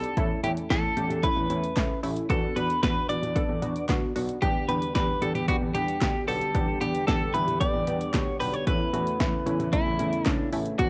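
This short synth-pop excerpt has the dry, close sound of a home cassette recording, its top end rolled off so the whole mix sits dull and hazy. At 113 BPM in a straight 4/4, the mood is driving yet melancholic. Up front, a clean, picked twelve-string electric guitar carries the melody alongside a punchy analog drum machine of kick, snare, hi-hat and handclaps, the snare, claps and hats given a short room. A funky, detuned sawtooth polysynth comps with a plucked filter and sub octave, treated with chorus and cassette tape, while a dark, mellow baby grand piano holds the bass from 0.2 seconds with long sustain. At 4.4 seconds a brassy, bold analog pad slips in behind the others with a soft attack, vibrato and a moving notch, as the chords pass from Aadd9/E and Bm/E to a long G before returning to Aadd9/E.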